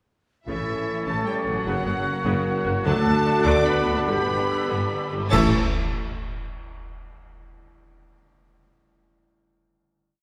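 A heroic adventure film score cue in 3/4 with a triumphant mood, its lush, vibrato-laden violin section carrying the melody high over a full orchestra of airy flutes, a clear oboe, a distant clarinet, a second violin line, bright driving violas, cellos doubling the tune at the octave, and a clear double bass ostinato reinforced by a mellow tuba. Mellow French horns and very quiet trombones sustain swelling chords, a dark, punchy trumpet section doubles the tune from the background, and a thumb-plucked concert harp ringing with sweeping arpeggios fills out the texture. The music slows from 2.3 s as dark cymbal swells, crashes and bass drum strokes join at 2.9 s, building to a band accent at 5.3 s and a final chord, the whole ensemble heard from further back in a reverberant scoring stage.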